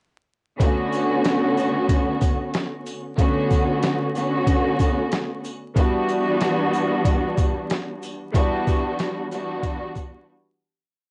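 A dark, lush studio string section sits up front from 0.6 seconds, its bowed, vibrato-rich chopped chords repeating like a sampled loop over Bm7 and then Em7 in B minor, filtered and dulled by cassette tape. This gritty, tough boom-bap hip-hop piece moves at 93 BPM with a swung 16th feel, driven by a compressed, pitched-down sampler-style kit with a thumpy kick, medium-tuned snare and quarter-note hats, while jingly sleigh bells ring on eighths in the background. The home cassette sound carries vinyl crackle and light reverb, and the whole piece fades out from 8.3 seconds before a short break at 10.3 seconds.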